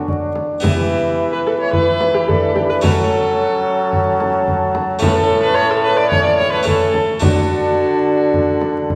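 A courtly yet rustic mood runs through this short cut from a longer renaissance-style consort dance, moving at a straight 109 BPM in 4/4 with tuning set to A4 = 445 Hz. A warm, gut-toned viola with light vibrato sits up front on the second line, while a mellow, soft-attacked cornet carries the melody from further back in the room. Beneath them, a close-miked bassoon adds accompaniment in the background, a clear-voiced second bassoon holds the bass, and a nasal, bright Italian-style harpsichord plucks out the accompaniment. A deep, large frame drum played with soft hands enters at 0.1 seconds, close and dry at the front. The harmony moves from D through Em, F#m and A before returning to D at 7.2 seconds, all heard through a reverberant recital hall with vinyl crackle.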